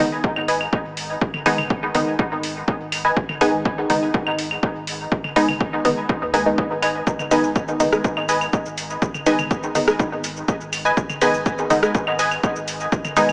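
Heard through a small speaker and bathed in a huge ambient reverb, this hypnotic, nocturnal dub techno excerpt runs at 123 BPM in G# minor, resting on a single G#m chord. An up-front, muted sawtooth chord stab with chorus, phaser, dub echo and sidechain pumping carries a filter sweep throughout, while a second detuned, filter-plucked stab with short decay plays a higher riff from 0.5 s, also echoed and pumping. A punchy, tape-colored analog kick sits up front over an overdriven deep house kit of metallic hats, rim click and shaker, with analog claves and echoed, pumping toms filling in as a round sine sub bass hums in the background.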